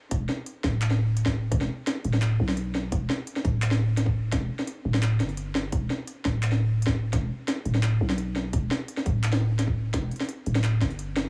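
Half-time drum and bass with a tense, cinematic mood, this short cut from a longer piece sits entirely in a drop, with a growling, buzzy 808-style bass pressed up front, its sine tone hitting fast and then decaying. A tight, layered electronic kick joins it, while an organic-sounding electronic kit adds handclaps, smooth hi-hats and a woody snare with a tape-warm character, re-recorded in a small room and placed up front. The mix is dry with little reverb and a high-pass filter shaping the overall sound.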